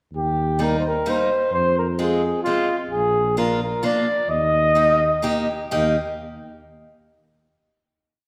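A swung 3/4 lilt at 130 BPM drives this short, jolly alpine folk dance in Eb major, with a smooth-topped classical tuba sounding root and fifth on the main beats from 0.1 s and a bright, boxy parlour steel-string guitar, picked with audible finger squeak, adding off-beat triad chords from 0.6 s. Up front, a mellow flugelhorn with light vibrato carries a festive, motif-based melody in classical period phrases, its tone distant and roomy, before the trio settles on a final chord at 5.7 s. A wet concert hall reverb gives the band the airy spaciousness of a church or large hall.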